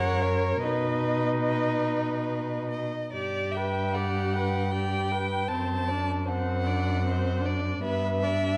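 Classical slow romantic movement for string quartet at 75 BPM in 3/4, serene and tender with rubato, where a rich, smooth first violin with light vibrato sings the melody over a more distant second violin line, a focused viola accompaniment and an up-front cello bass, moving from B major to G major at 3.1 seconds, all bathed in recital hall reverb and the warbly pitch drift of worn old cassette tape in this brief fragment of a longer piece.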